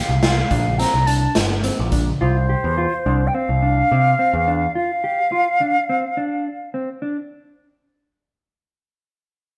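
A pure-toned wooden flute leads this short progressive instrumental in 9/8, its crisp attack, vibrato and airy highs sitting up front as it carries the melody through the upper register. Beneath it, a dark, clean electric guitar plays fingered arpeggios in the middle range, while an overdriven picked bass, direct and amped, drives the low end until about 4.7 seconds. A raw garage drum kit of hi-hat, punchy kick and medium-tuned snare adds a saturated, gritty edge with a rolled-off top, but it plays only briefly before stopping at 2.1 seconds. The harmony moves from Bbsus2 to Csus4 and lands on F5, underpinning the intricate, driving passage. The band plays live together in a moderate stone room whose reverb lends the whole a natural, resonant space, and the flute rings on until about 6.7 seconds of this fragment cut from a longer piece.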